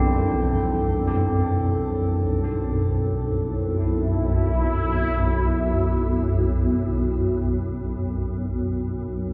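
A swarming, detuned drone sits up front from the first moment, low and tense under a filter sweep. Alongside it, a resonant sawtooth pad holds a D5 chord with chorus and shimmer reverb, and carillon bells trace soft, bronze arpeggios through tape echo until 5.2 s. This dark ambient fragment of a longer piece drifts in free time, desolate and unsettling, with its pad and bells fading out inside a cathedral reverb that rings for 5.5 s.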